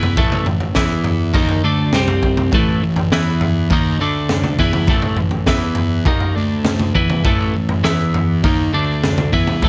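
A clean, compressed twelve-string electric guitar with phaser leads this hazy, kaleidoscopic psychedelic rock excerpt with an up-front riff that cycles through A5, E5, D#5 and D5 chords, backed by a gritty, saturated breakbeat kit with a punchy kick, a high-tuned snare and a rolled-off top in a small room, and a fuzzy, overdriven picked electric bass, all set in light reverb.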